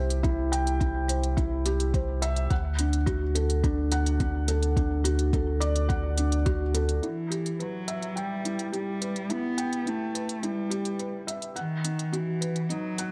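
Piano and strings electronica, melancholic and intimate and cut from a longer piece, in which a thick-felted upright piano with audible action noise, low-pass filtering and tape echo carries a riff throughout over smooth overdriven electronic hats, while a round, tube-saturated sub bass with sidechain pumping and a soft overdriven kick drive the opening until the kick drops out at 6.6 seconds and the bass at 7.0 seconds, when a filter sweep begins on the piano and a single nasal, boxy bowed cello enters with vibrato and portamento, all set in a light studio reverb.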